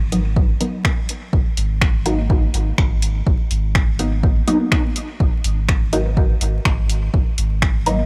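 A 124 BPM groove in 4/4 with a light 16th-note swing drives this cavernous dub techno cut in G# minor, resting on a single G#m7 chord, with a punchy, up-front electronic kick entering at 0.4 seconds. A round sine sub bass with tube saturation and sidechain pumping sits beneath muted, detuned sawtooth chord stabs that pluck and fade quickly through phaser and dub echo while a filter sweeps across them. Overdriven finger snaps and hi-hat from a deep house kit, re-recorded in a small room, ride over a bed of vinyl crackle in this short section cut from a longer piece.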